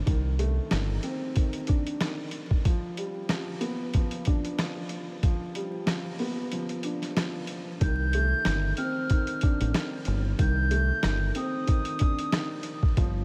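Vinyl crackle and a light, small-room reverb frame this moody, reflective boom-bap hip-hop excerpt, where a dark, woody upright piano with audible action noise and a vintage cassette-tape tint sits up front beside a gritty, compressed, pitched-down sampler drum kit with a thumpy kick and medium-tuned snare. A deep, round, punchy fingered electric bass sounds only briefly at the start, then drops out through a break that begins at 2.6 seconds. At 7.8 seconds the bass returns and a breathy, close-miked silver concert flute joins with an expressive, straight-toned melody touched by delay.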